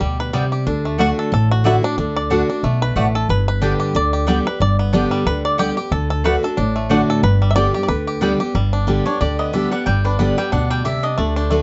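A bright, twangy fingerpicked banjo leads this joyful, virtuosic bluegrass excerpt at 183 BPM in swung 4/4 and G major over a full-bodied, up-front dreadnought guitar and a growly, thumpy pizzicato upright bass, while a woody double-strung mandolin adds stabs from 0.3 seconds before taking its own solo at 8.5 seconds, all in light reverb.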